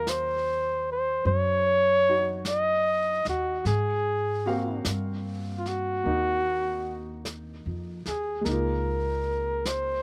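Dry and close with an open-air stillness, this smoky, melancholic jazz ballad fragment sways at a slow 50 BPM swing in 4/4, where an up-front flugelhorn carries the melody with light vibrato and a slapback echo over clear, short-sustained baby grand piano chords, a woody, thumpy gut-string upright bass played pizzicato, and a vintage brush kit of snare and hi-hat with a rolled-off top, drifting from Ebm7 through Ab13 to Db69.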